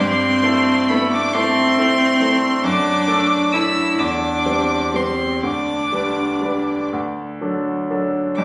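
A rubato 6/8 lilt carries this tender, lyrical slow movement for piano trio, cut from a longer classical piece, where a close, up-front violin sings the high melody with clear vibrato, a smooth bowed cello traces a second line with light vibrato, and a brilliant concert grand supplies the accompaniment with deep bass and long sustain, the trio heard through the wet reverb of a recital hall.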